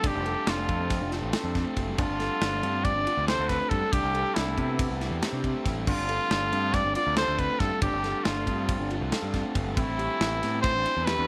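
Math rock and midwest emo meet in this intricate, playful excerpt at 277 BPM (eighths) in 9/8, where an up-front, clear trumpet with slapback echo and scooped, vintage-toned notes carries the melody over ringing handpan arpeggios struck with sharp finger strokes, a very quiet, raw, bright, double-tracked garage guitar riff, a growling, punchy fingered bass with overdrive, and a polished studio drum kit of tight kick, snare, ride and crash, set in light small-room reverb as the chords move from F6 through G9sus4 and Cmaj9 to Am7.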